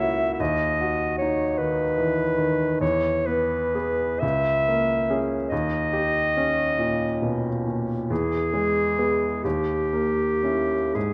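A clear, classically styled solo clarinet carries a yearning, solemn melody up front through this 11.1-second fragment of a romantic classical duo in a rubato 6/8, supported by an intimate, natural-sounding baby grand piano accompaniment whose long sustain and audible action noise sit close in a moderate recital hall reverb as the harmony moves from B/D# through E and A#m7b5/C# to a closing D#7b9.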